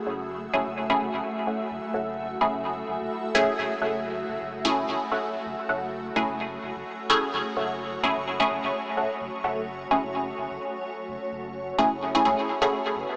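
A cloudy, blurred granular pad opens this meditative, cavernous dub techno passage, soon joined by a round sine sub bass and two detuned sawtooth chord-stab parts: one a bright riff up front, colored by phaser, chorus and dub echo, and the other a muted, plucky stab layer with its own chorus, phaser and echo. All of it circles a single minor-seventh chord with a light swing. After the stab riff falls away, a resonant, bubbling stepped-filter texture surfaces with chorus at 13.0 s, and the excerpt, cut from a longer piece, carries a gritty small-speaker hardware sound inside a huge ambient reverb.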